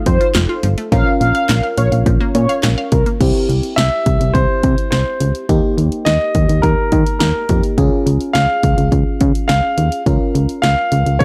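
A glassy, chorused FM electric piano opens this melancholic, cool synth-pop excerpt at 105 BPM. It is joined almost at once by a round, dark FM bass, a punchy analog drum machine with handclaps and crash, a mellow, brassy synth line with phaser and tape echo, and squelchy, resonant blip-pluck arpeggios; the brass and pluck drop out by 3.2 seconds, and from 3.8 seconds an intimate concert grand piano carries the melody with tape echo over chords moving from F7 and Bbm through C, Eb and Db, in a dry, gritty recording.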